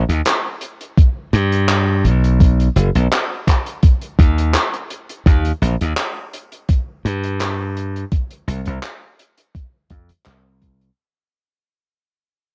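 This short excerpt has a dry, cassette-tape sound with little reverb, giving the vaporwave groove a faded, dreamy haze. At 84 BPM in 4/4 with a light swing on the sixteenths, it sits in Eb major and moves at an unhurried pace. A bright, punchy slap bass with a glassy edge sits up front through a low-pass filter, and a filter sweep runs across it from 5.3 seconds as the piece fades out. A muffled soul drum kit with a rolled-off top supplies handclaps and hi-hat under 12-bit sampler grit. An overdriven electronic kick enters at 1.0 second with a thumpy, sampler-style punch, re-recorded in a large room yet placed prominently in the mix. A brief break arrives around 4.5 seconds before the second half begins its fade.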